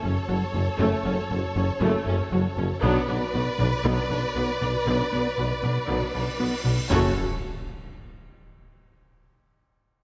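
Tense and relentless, this hybrid orchestral and electronic film cue, cut from a longer piece, sets two dark violin lines with expressive vibrato, one distant and one close with portamento, over a lush viola section in the background, a very quiet soft-attacked cello section, a woody double bass section and a vintage solo tuba. A rubbery, bouncy square-wave bass riff with a resonant filter pluck drives the low end through the F#m and Bm chords, while a French horn section enters at 0.8 seconds with smooth sustained chords. At 6.0 seconds a huge, bright cymbal swell rises into an impact at 6.9 seconds, all set in a moderate scoring-stage reverb.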